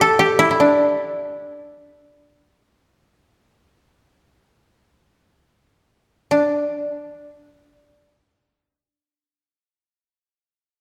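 A solo koto, plucked with fingerpicks and sitting woody and up front, plays a calm, austere passage of traditional Japanese music in free time, slowing down over the first 6.3 seconds before ringing into the lingering reverb of a large hall until 9.5 seconds, in this excerpt from a longer piece.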